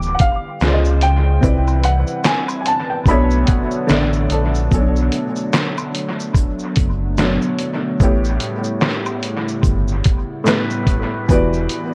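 A deep, sine-like sub bass with an added octave sits up front, anchoring this reflective, nostalgic lo-fi hip hop excerpt in B minor at a relaxed 73 BPM with a swung 4/4 feel. A compressed, pitched-down sampler-style drum kit, re-recorded in a small room, brings a thumpy kick, medium-tuned snare, hi-hat, handclaps and shaker, its hits trailing off in dub echo. A soft, felt-muted upright piano carries the accompaniment throughout through tape saturation and a low-pass filter. Above it a dark, woody, slightly detuned second upright with audible action noise plays the melody, falling silent for a break at 4.7 seconds and returning at 11.3 seconds. A hollow, flute-like pad with ensemble chorus holds slow-blooming chords in the background, a quiet tube shaker and woodblock add close, dry detail, and the harmony drifts from Em7 through Cmaj7, Bm9 and A9 back to Em7 in an echo-heavy mix with light reverb and a cassette-tape cast.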